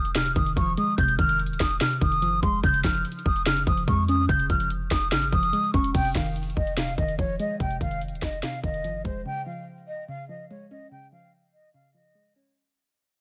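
Brooding and melancholic, this half-time trap excerpt in F minor at 145 BPM sets a breathy, expressive concert flute with vibrato and tape echo up front over a soft, round chorused pluck, a deep, boomy 808-style bass that drops out at 9.2 seconds, and an electronic trap kit with a hard-clipped kick, sharp snare and metallic hats, all in a dry mix that fades out from 5.9 seconds as the chords move from Fm7 to Db.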